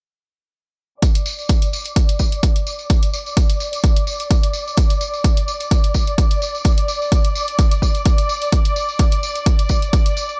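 A dry, gritty recording with a small-room ambience carries this uplifting, joyful piano house passage, cut from a longer piece. From 1.0 s a punchy analog kick drum sits up front alongside an electronic hi-hat that shares its re-recorded small-room character, all moving in 4/4 with a light swing on the sixteenths. A band-limited, vintage-sounding tambourine adds an acoustic shimmer close to maracas and group handclaps, tucked low in the mix. Above them, a clear, focused studio violin section holds sustained bowed chords in a high register, its ensemble vibrato shaped by sidechain pumping and a low-pass filter. A filter sweep runs across the strings until they end at 10.4 s, closing out the whole joyful section.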